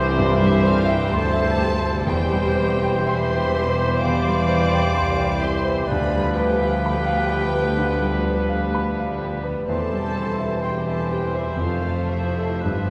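A clear concert grand piano leads this lush, passionate romantic movement in C major, its open, up-front melody reaching deep into the bass. Around it, a rich violin section sings with vibrato and portamento from a distance, joined by a bright oboe, a hollow silver flute, a warm clarinet and a second, smoother violin line, while bassoon and violas fill the accompaniment, a mellow horn section holds sustained chords, and tight trumpet stabs sit in the background. Tuba, cellos and double basses anchor the bass at a slow, rubato 56-66 BPM, all bathed in a wet concert hall reverb heard from further back in the room, in this 12.9-second passage cut from a longer piece.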